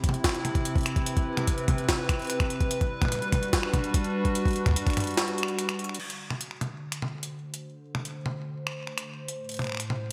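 IDM at 146 BPM in a straight 4/4, this short excerpt from a longer piece carries a melancholic, eerie mood. A hollow, flute-like pad with a slow attack and long release holds sustained chords up front, moving from Cmaj7 to Gmaj7, then D7 and Am7, its detuned tone thickened by chorus. An overdriven, pitched-up electronic kick gives a thumpy pulse until 4.9 s, while a gritty, compressed jungle-style sampler kit with a high-tuned snare, hi-hat, toms, finger snaps and crash cymbal runs throughout, its delay adding echoes. A break arrives at 5.2 s with a drum fill at 5.8 s, and from 6.0 s a filter sweep on an analog synth pad opens the second section. The bright digital production recalls the 1980s, set in a lush hall reverb.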